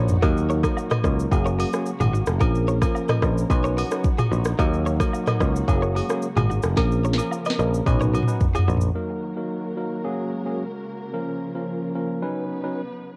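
An electronic afro-pop drum kit sits up front with a deep kick, sharp snare, shakers, rim clicks and toms, given a cassette-tape color, driving this breezy, joyful afrobeats excerpt at 110 BPM in a straight 4/4, with drum fills at the start and from 6.8 to 9.0 seconds. A growly, direct picked electric bass and a clean tine electric piano heard through its built-in speakers share the foreground. Behind them are a compressed, warm clean guitar riff with analog delay, close and dry agogo bells and woodblock, and a dark, woody string section whose lush, bowed chords cycle through D#m, F#add9, A#m and Badd9. After the groove drops out at 8.9 seconds, the strings and electric piano carry on alone in a dry, homemade cassette sound, the piano stopping at 12.8 seconds and the strings sustaining until 13.2 seconds.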